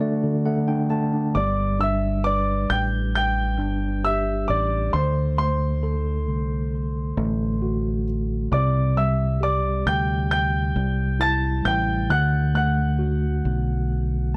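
A concert grand piano carries the melody in this heartfelt, emotional pop ballad at 67 BPM in G major, its intimate, polished tone ringing with long sustain, deep bass and audible action noise. A bright, clean tine electric piano plays the accompaniment through its built-in speakers and opens with a fill over a short break before the fingered electric bass enters at 1.4 s with a dark, round, punchy sound. This fragment of a longer piece has a dry, close 1970s-style studio sound in a small room, with all three instruments up front over chords moving from Gadd9 through D7 and Cadd9 to D.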